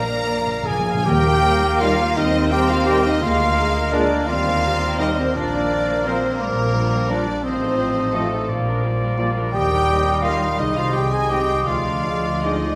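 A timpani fill on calf heads opens this serene, lyrical slow movement for symphony orchestra, cut from a longer piece, as a rich, smooth violin section takes up the unhurried 6/8 melody with vibrato and rubato, the timpani returning briefly at 9.5 seconds. A clear oboe, pure-toned flute, mellow vintage clarinet and a softer second violin section weave second lines, while bassoon and a background viola section accompany, and cellos and a focused, lush double bass section carry the bass. Very quiet horn and trombone sections sustain chords alongside ringing fingerpicked harp arpeggios and soft trumpet stabs, all in a moderate concert hall reverb.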